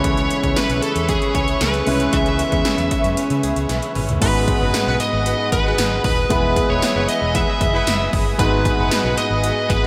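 A straight 4/4 pulse drives this moody, dramatic 1980s-style pop passage cut from a longer piece: up-front electronic pad drums with a punchy kick, gated snare and toms, metallic hats and overdrive play a fill at 3.7 seconds, while a dark, round, foam-muted fingered bass and a clear concert grand piano support a smooth, overdriven lead guitar melody and a detuned sawtooth analog pad holds chorused chords; a very quiet, bright clean guitar picks a riff until 4.8 seconds, a distant, mellow horn section adds stabs from 4.6 seconds, and the whole mix is soaked in a huge, dreamy reverb.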